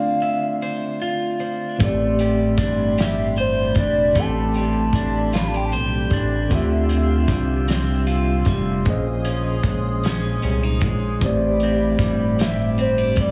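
Slow six-eight R&B with a late-night, yearning mood, this passage is cut from a longer piece. It opens with a short break in which a hollow, woody synth lead carries the melody over a slightly broken-up electric guitar playing a second line and a tine electric piano heard through its built-in speakers. The lead is colored by chorus, vibrato and tape echo, while the guitar sits in spring reverb. At 1.8 seconds a cloth-damped acoustic kit with a fat snare and tight kick arrives up front, joined by a rubbery, bouncy square bass and a shimmering, retro pulse-width pad holding evolving, slow-attack chords. The lead drops out at 5.7 seconds and returns briefly near the close, leaving guitar, electric piano, pad, bass and drums to carry the ninth and eleventh chords, all set in light studio reverb and ambience within a heavily compressed radio sound.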